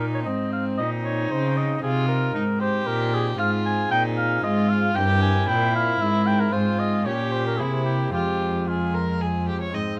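Introspective and grave, this excerpt of a baroque-style sonata movement in 3/4 at 114 BPM moves from Ab major into F minor at 3.4 seconds, with a mellow oboe carrying the melody up front with light vibrato, a dark, nasal violin on a distant gut-string second line, a pipe organ's cornet stop adding chiff to the accompaniment, and a rich, bowed cello anchoring the bass close and up front, all captured by detailed microphones in light reverb.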